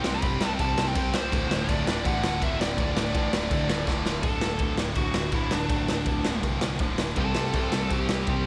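Raw and gritty, this short punk rock cut sits in a small room with light reverb, and the up-front garage drum kit carries a saturated sound in a pumping room, with dark cymbals, a punchy kick and a rolled-off top. At 164 BPM in a straight 4/4, the energetic, rebellious drive comes from a biting, overdriven lead guitar that carries the melody throughout. Beneath it, three guitars grind out riffs in the background: a sludgy overdriven part with slapback echo, a bright, scooped high-gain guitar that is double-tracked and also echoed, and a bright distorted electric guitar that drops out at 4.2 seconds and returns at 7.2 seconds. A growling picked bass, overdriven and played both direct and amped, anchors the low end. The chords move from C5 to D5 and back to C5, and a drum fill at 3.9 seconds pushes the music into its second section.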